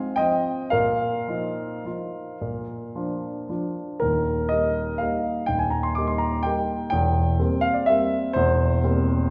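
A warm concert grand piano plays a graceful, sparkling classical waltz alone in a flowing rubato triple time, its deep bass rooted beneath a melody that settles into a fresh passage at 4.0 seconds, all heard from further back in a recital hall whose wet reverb lingers around this short excerpt cut from a longer piece.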